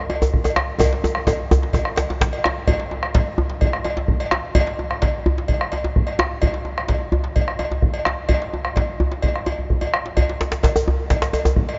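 This West African traditional drum ensemble excerpt moves at 128 BPM in a straight 4/4 with an earthy, festive mood, sounding as if played in a vast, echoing space with a muffled top end. A deep, dark bombo and a medium-tuned djembe played with soft hands sit up front and close, while a metallic cowbell rings from a distance. A second, tight and cracking djembe with metal rattles enters at the very start, plays through much of the opening drum fill, drops out before the shift to a new section at 2.7 seconds, and returns at 10.4 seconds after a brief fill.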